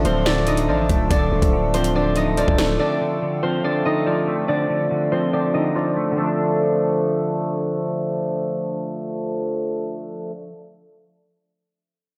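A ringing, fingerpicked concert harp carries the melody up front, its acoustic tone softened by a low-pass filter and trailed by analog delay. This dark, cold drill excerpt at 142 BPM moves in a half-time feel in D phrygian, resting on D minor. A clean, compressed semi-hollow electric guitar plays hollow-body accompaniment through analog chorus. A close-miked hand-pumped harmonium holds reedy, breathing chords, full and mellow under its own low-pass filter. The drill drum kit, with a knocking kick, sharp snare and metallic hats, stops at 2.7 s, and the buzzy, growling 808-style bass with its fast attack stops at 2.8 s. A filter sweep runs through the first 6.2 s, and the dreamy mix is soaked in a lush hall reverb.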